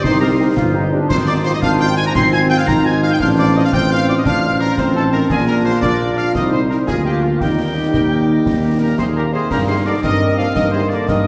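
Heard from further back on a wet scoring stage, this rousing, spirited excerpt of a military-style march for wind band moves in a straight 6/8 at 114 BPM in Eb major, its harmony passing from Cm through Fm7/Ab and F7/A before settling on Bb and Eb. A bright trumpet section carries the melody over a clear woodwind section and a pure, vibrato-laden, expressive piccolo, while a smooth-topped, tight trombone section sustains chords, mellow French horns accompany in the background and a punchy, roomy tuba sits up front on the bass. Concert snare drum, concert bass drum and dark-toned clash cymbals sound close and dry, and a soft-attacked euphonium adds its own line from 8.8 s.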